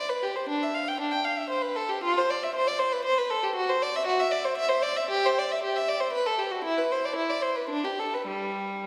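A lone bowed violin stands up front, its gut-string tone reedy and warm in a period style that suits this baroque-style suite movement for unaccompanied violin. The mood is radiant and serene, moving in three with a flexible, rubato feel as the single player ranges from G3 up to G5. A church acoustic surrounds the instrument with a lush, wet reverb whose decay lingers for about 2.7 seconds, giving each phrase a glowing halo. This brief 8.9-second passage is cut from a longer piece and stays within one section throughout. The result feels intimate yet spacious, like a quiet moment of reflection in a lofty hall.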